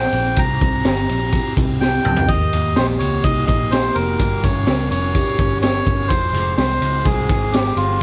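A reedy, breathy melodica carries the melody up front in this jangly indie pop piece, cut from a longer track, its nasal, plastic-cased tone setting a bittersweet, restless mood in a straight four-four feel. Beneath it, an electric guitar through a small old amp plays slightly broken-up, compressed arpeggios with subtle chorus and plate reverb. A vintage muted picked electric bass sits dark and round, foam-muted and amped, low in its register. The raw garage drum kit, gritty and saturated with a punchy kick, high-tuned snare and rolled-off top, comes in at 0.1 seconds on kick, snare, ride, splash and toms, with a fill between 1.8 and 2.3 seconds. The harmony moves through C, Eb, Gdim and Fmadd9, and the whole recording carries light reverb and the worn, warbling pitch drift of old cassette tape.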